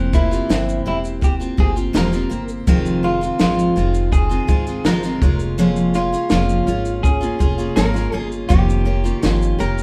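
Acoustic pop in F minor at 82 BPM, reflective and wistful, this short cut from a longer piece sets a full-bodied, woody dreadnought steel-string guitar picked up front beside a thumpy gut-string upright bass, with a small fingerpicked nylon-string guitar playing arpeggios in the background, a compact cocktail kit of punchy kick, high-tuned snare and shaker, and a slightly broken-up, compressed electric guitar carrying the melody from 0.1 seconds over C7, Fm7, Bbm7/F and Eb7/F, the band playing live in one room with moderate studio reverb.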